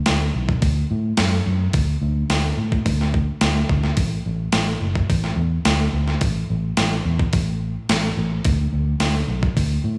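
A crisp 8-bit digital drum machine sets the beat of this dreamy, wistful shoegaze and dream pop fragment, its sampler-style kit of thumpy kick, medium-tuned snare and hi-hat pushed through overdrive and re-recorded in a small room so it sits up front in the mix. Alongside it, a vintage muted fingered electric bass plays in a low register from F#1 to A2, its foam-muted tone dark, round and punchy, coming through an amp and also placed close to the listener. The rock groove moves at 107 BPM in a straight 4/4, with the bass running from 0.1 to 10.0 seconds and the drums stopping just before, at 9.7 seconds. A moderate, lush hall reverb with a 2.7-second tail soaks the mix, giving the pairing of gritty electronic beat and rounded bass a hazy, floating atmosphere. Cut from a longer piece, this passage stays in a single section throughout.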